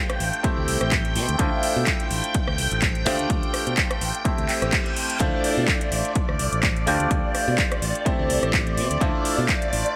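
A light reverb and digital ambience give this filtered disco house excerpt a subtle sense of space, with a nostalgic, sensual mood and a gently swung sixteenth-note groove in 4/4. Up front, an intimate baby grand piano plays midrange accompaniment with audible action noise and long sustain, colored by a phaser and sidechain pumping. Above it, a vintage string machine holds swirling, warbling sawtooth chords with a soft attack and long release, treated with ensemble chorus, phaser and the same pumping. A growly, direct fingered electric bass anchors the low end under a cycle of C6, Dm9 and G9sus4/D, while an overdriven, punchy kick and a layered house kit of handclaps, rim clicks and metallic, pumping hats, both re-recorded in a large room, drive the beat. A reverse cymbal rises in the background at 4.6 s, marking the middle of the excerpt.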